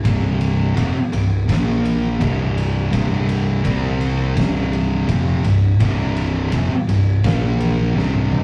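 A rough rehearsal-room recording with cassette tape grit and a wet small-room reverb frames this ominous, sludgy stoner and doom metal excerpt at 83 BPM in a straight 4/4, cut from a longer piece and tuned slightly sharp of concert pitch. Two thick fuzz guitars sit up front playing a distorted, picked riff from the start, one warm and one dark, moving between C5 and Bb5 power chords. Beneath them a growling fingered electric bass with bright overdrive and an oversized low-tuned acoustic kit with a punchy kick, fat snare, dark cymbals and toms hold the low end, and a drum fill arrives at 8.0 seconds.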